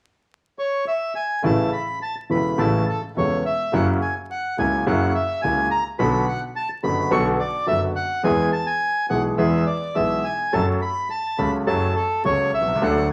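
A reedy, dark bandoneon carries the melody from 0.6 s, airy and up front, and at 1.4 s a clear, polished concert grand piano with deep bass and a single bowed double bass with intense vibrato and a smooth top join beneath it in this playful, elegant rubato tango in A major at 106 BPM, heard in a wet large-studio reverb with vinyl crackle and cut from a longer piece.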